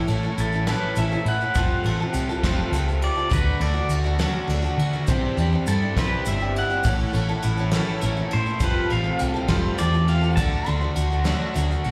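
Jangly and open-road, this short folk rock and heartland rock excerpt in D major rolls along in 6/8 at 68 BPM as a twangy pedal steel guitar with fingerpick attack and volume swells carries the melody through plate reverb, slapback and tape echo, entering at 0.4 seconds over a shimmering octave-doubled twelve-string acoustic, a dark overdriven lo-fi garage guitar riff in the background, a round hollow-body bass up front, a soft brush drum kit with fat snare and punchy kick, and a grainy tube shaker, all heard live through a club PA as the chords move from A through Fadd9, D and Cadd9.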